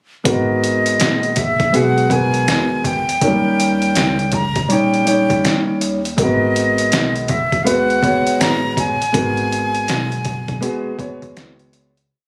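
Cool and mellow, this short jazz-hop piece in G# minor moves at 81 BPM with swung sixteenths, as a dark, boxy grand piano with audible action noise plays pushed drop2 chords and grace notes over G#m9 and D#7, a breathy, close-miked concert flute spins a motif-based melody in sentence-like phrases, a woody, growly pizzicato upright bass walks with slides and chromatic approach notes, and a gritty, pitched-down, overdriven sampler-style kit sets a laid-back beat of thumpy kick, medium-tuned snare and sixteenth-note hats, the whole sounding as if caught on a phone in a club-like room before fading out from 9.1 seconds.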